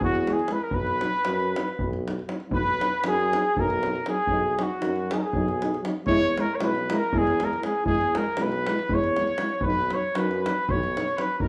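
The dark trumpet leads up front with a soft attack and light vibrato, carrying the melody over a distant flugelhorn second line, a clear vintage tuba bass and a deep, band-limited davul in this festive, virtuosic Balkan brass band music in 7/8 at 236 BPM (eighths) in B major. A mellow euphonium and a smooth-topped trombone with light vibrato join at 0.3 s as background accompaniment, all playing with a classical touch. The band plays live together in a large studio with moderate reverb, the roomy flugelhorn and euphonium sitting back behind the trumpet, as the harmony moves between E and B in this cut from a longer piece.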